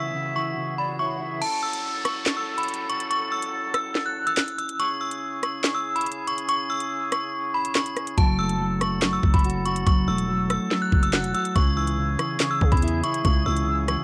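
Ominous, menacing half-time drill in F# minor at 142 BPM, cut from a longer piece, where a ringing, warbling FM bell with chorus and phaser carries the melody over a warm woodwind section, a dark clean electric guitar and a brief airy, distant flute with tape echo before the up-front drum kit arrives at 1.4 s, its kick muted until a growling, buzzy 808-style bass and the kick come in at 8.2 s, all with a dry cassette home-recording sound and a background swell and downlifter.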